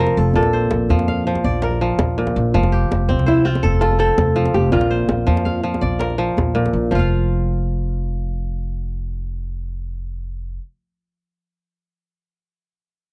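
Bright, ringing fingerpicked kora arpeggios and a woody pizzicato upright bass sit up front from the opening of this joyful, hypnotic West African traditional piece at 110 BPM in 12/8, while a dark, clean hollow-body electric jazz guitar carries the melody until 6.5 seconds over a deep djembe in the background, the harmony moving between Bb and F in a dry, close 1970s-style small-room sound.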